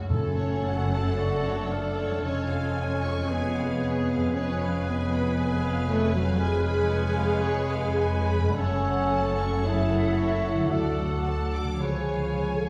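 Flexible rubato in a slow 4/4 pulse shapes this elegiac, yearning romantic orchestral movement, taken from a longer piece and heard from further back in a reverberant recital hall. A focused, bowed violin section carries the melody within a narrow high range, while a second violin section with a soft attack and expressive vibrato sits in the background on a supporting line. A very quiet concert harp rings out mellow fingerpicked arpeggios, and a pure-toned large flute ensemble with rolled-off highs, a distant, roomy solo oboe and a solo clarinet add further second lines. The viola section adds intense, rich accompaniment alongside a mellow solo bassoon, while the French horn section holds the loudest part: smooth, sustained chords with light vibrato. Lush cellos and woody double basses anchor the bass, and close, dry timpani on medium mallets sound only from 0.1 to 1.7 seconds before the orchestra continues through to the close at 12.7 seconds.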